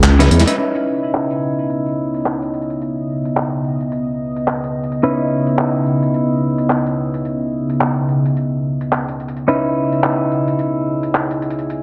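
A swung sixteenth-note groove in 4/4 drives this gritty, funky glitch hop clip, cut from a longer piece and opening on a short drum fill before the main section settles in at 0.6 seconds. The boom bap sampler-style kit of handclaps, hi-hat and a medium-tuned snare sounds pitched down, compressed and tape-warm, with low-pass filtering dulling the hats and snare and a studio reverb around them. A clean electric guitar enters at 0.2 seconds with fingered, compressed stabs, joining a band accent at 0.4 seconds, its tone roughened by vintage 12-bit sampler grit, softened by a low-pass filter and trailed by digital delay. Alongside it, a dark analog pad holds deep, moody sustained chords starting on C#m9, its sawtooth and triangle voices with a sub octave and slow attack shimmering through chorus and phaser. The guitar, pad and drums all sit up front in a dark production, bathed in a moderate plate reverb and digital ambience.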